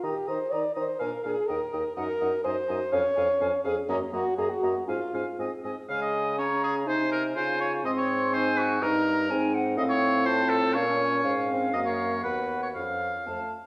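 In a rubato 2/4 at 123 BPM, this restless, stormy classical-period wind quintet movement in Db major, turning to Bb minor at 9.8 s, sets a hollow, tongued flute melody with vibrato over an up-front oboe second line, a clear French horn and mellow background clarinet accompaniment, and a dark, smooth-topped bassoon bass, heard from further back in a wet recital hall.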